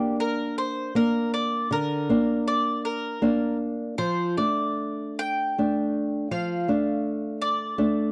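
In a rubato 12/8 drifting around 48-55 BPM in dotted quarters, this solemn, elegiac romantic duo in G minor, cut from a longer piece, sets a bright, woody, picked mandolin melody on double strings between G4 and G5 over a small-sounding fingerpicked nylon-string guitar with audible finger squeak, both up front in a dry, close 1970s-style studio sound, as the harmony moves from a rootless Gm to Dm/F at 4.0 seconds.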